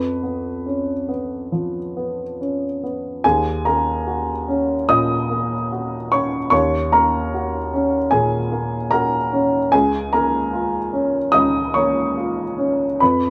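Played rubato around 73 BPM in 4/4, this wistful, melancholic fragment of neoclassical minimalist piano in Eb minor, tuned to A4 = 443 Hz, features a solo upright piano, woody, intimate and slightly detuned with audible action noise, sitting up front in a room with light reverb as it moves from Db7/F to Ebm7 at 3.2 seconds and Bbm/Db at 9.7 seconds.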